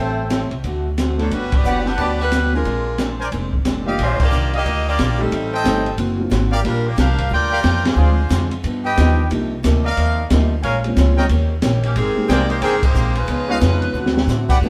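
A swinging 4/4 pulse at 180 BPM drives this energetic big band excerpt, cut from a longer piece, with the upright bass anchoring the low end from the first moment, woody and up front, while an open jazz drum kit joins at 0.3 seconds with dark cymbals, a high-tuned snare and a boomy kick. A clear trumpet section punches out tight stabs with vibrato and a soft attack, and a picked acoustic archtop guitar sits in the background, bright and boxy, with audible finger squeak. At 1.2 seconds an edgy saxophone section takes the melody with present, vibrato-laden tone, joined by a dark, mellow upright piano that sounds slightly detuned and has a short sustain. The harmony settles into Eb major from 4.0 seconds and moves through rich jazz changes, with band accents punctuating the groove; the saxophones return at 11.8 seconds, and a drum fill arrives near the close at 13.9 seconds. The whole band plays live in a stone room with moderate reverb.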